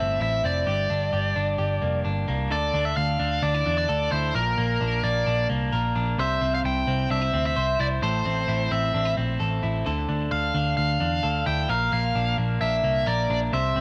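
Jangly indie pop in D minor at 131 BPM, this bittersweet, wistful excerpt runs from 0.0 to 13.8 s with three up-front parts playing throughout. A biting, overdriven lead guitar carries the melody through tape echo, while a slightly broken-up, compressed electric guitar spins arpeggios with its own tape echo, and a dark, round, foam-muted picked bass anchors the low end. After a brief opening on Am7 and Gm, the harmony settles at 2.5 s into a cycle through Dmadd9, Bb, C and Am, all set in a light digital ambience.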